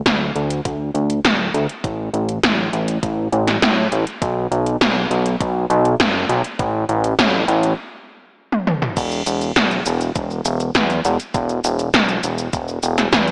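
A fat, nasal analog bass built from detuned sawtooth and square waves underpins this nostalgic, driving synthwave excerpt, its saturated filter pluck pumping from sidechain compression in the low register. Overdriven 80s electronic drums sit up front, with metallic hi-hats, cabasa, crash cymbal, and a gated snare and toms soaked in gated reverb, while a thumpy, sampler-style electronic kick sits lower in the mix. The groove stops at 7.8 seconds, a drum fill enters at 8.5 seconds, and a new section begins at 9.0 seconds, set in a lush digital hall ambience that sounds as if heard through a small speaker.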